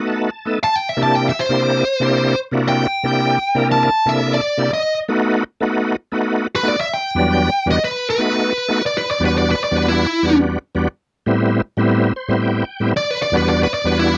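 A shouting tonewheel organ opens this mournful, brooding blues fragment with a short fill, its full sound colored by key click, light overdrive, chorus vibrato and a slow rotary speaker. At 0.6 seconds a dark, overdriven electric lead guitar enters up front, picking a biting solo over the organ's accompaniment. The harmony leans on B7 and C7 before settling into Em7 and Am7 when the second section arrives at 8.8 seconds. The organ, bright and spanning from low bass to high register, steps forward again with another fill at 11.9 seconds while the guitar carries the melody to the end. The sound is dry and close, like a 1970s studio session, with both parts sitting prominently and the piece cut from a longer performance.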